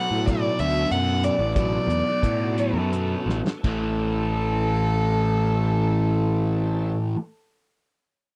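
A mysterious, hypnotic psychedelic rock fragment in 6/8 at 54-64 BPM opens with an airy, sul tasto violin melody carrying light vibrato and slapback echo, over a double-tracked fuzz guitar riff with phaser and a very quiet, bright tonewheel organ holding sustained chords through a slow rotary speaker. A punchy, overdriven picked bass enters at 0.1 seconds, and a cloth-damped, thuddy drum kit with dark cymbals plays from 0.3 to 3.8 seconds. The tempo slows across the opening section, and a drum fill at 3.3 seconds leads the harmony from Bm7 to Am7 at 3.6 seconds, all captured in a dry, close 1970s-style studio sound.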